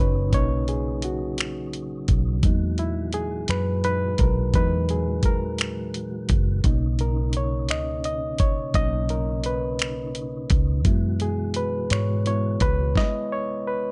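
A dry recording with dulled highs opens this slow 6/8 R&B fragment in B major, moving at 57 BPM with an intimate, tender mood. A barky, lightly overdriven reed electric piano sits up front and takes a solo over Bmaj9, Emaj9#11 and F#9sus4 chords. It is backed by a soft, flute-like tonewheel organ with chorus vibrato, key click and fast rotary speaker in the background, a dark, foam-muted fingered electric bass, and a gritty, compressed sampler-style kit of finger snaps, hi-hat, thumpy kick and snare. The organ and bass fall away at 12.9 seconds and the drums at 13.1, while the electric piano comes to a stop by 13.9 seconds.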